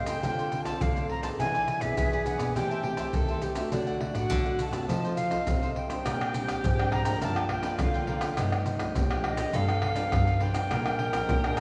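Samba and choro in a nostalgic, bittersweet mood, this brief passage is cut from a longer piece and moves at 103 BPM with a straight feel. A breathy, reedy flute carries the melody with vibrato and a soft attack, its highs rolled off, while a mellow tenor saxophone shapes a second line in subtone, with scooped notes and a smooth top. Underneath, a crisp, picked cavaquinho sits in the background, and a classical nylon-string guitar adds thumb-plucked accompaniment while a second nylon-string guitar, also thumb-plucked, holds the bass from 0.1 seconds. Up front, maracas, pandeiro, tamborim and a deep surdo give a vintage, band-limited percussion sound. The harmony moves through chords like Dm7 and E7 before shifting at 6.1 seconds to a new section opening on Bb69 and passing through Ebmaj9#11/G to Bb7. Everything sits in a wet scoring-stage reverb with the feel of a church or concert hall.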